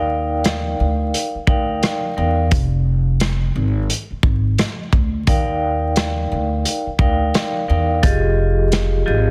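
The vibraphone, struck with medium hard mallets, sits up front with a metallic, ringing tone and a slow motor vibrato, its sound made vintage and band-limited by cassette tape treatment and filtering as it plays accompaniment from F3 to G5. This moody, dark boom-bap hip-hop piece moves at 87 BPM in 4/4 with a swung sixteenth-note feel, cut from a longer work. An upright bass plucked on gut strings sits up front beneath it, woody and thumpy, spanning F1 to E2 throughout the 9.3 seconds. A crunchy breakbeat kit comes in at 0.4 seconds and stops at 8.9 seconds, its punchy kick, medium-tuned snare, rim click and hi-hat sounding gritty and saturated with a rolled-off top. The harmony shifts between Ebmaj7 and Fm, closing on Fm7, while small room ambience, vinyl crackle and a dense, heavily limited modern master frame the whole.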